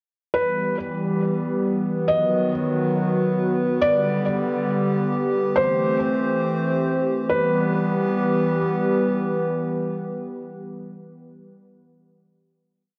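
Melancholic and spacious, this short hip hop piece drifts in free time, built from just two parts bathed in a lush hall reverb. A felt-muted upright piano carries the melody from 0.3 to 8.6 seconds, a sparse looping phrase repeated like a sample, its muted, boxy tone softened by a low-pass filter and trailed by tape echo, with audible action noise lending an intimate feel. Beneath it, a hollow soft pad holds sustained chords from 0.3 to 11.5 seconds, its flute-like, detuned tone thickened by chorus and sitting up front in the mix with a slow attack and long release. The harmony moves through Em, B, G and Am7 across the verse before settling on a final Em chord at 7.3 seconds. After the piano falls away, the pad lingers alone, its mellow sustain fading into the reverb's tail.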